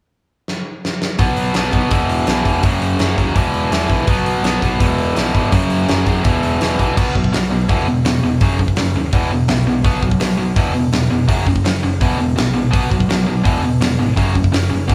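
At 166 BPM in a straight 4/4, a big acoustic rock drum kit kicks off this rebellious, rowdy punk rock excerpt with a fill from 0.5 to 1.2 s, its medium-tuned snare, tight kick, hi-hat and crash sitting up front with a rolled-off top. At 1.2 s two bright, distorted picked guitars and a growly, punchy picked bass charge into a looping B5, E5 and F#5 progression, one tight guitar up front and a compressed one in the background until it drops out at 7.0 s. The whole band plays live in one stone room with moderate reverb, and the excerpt is cut from a longer piece.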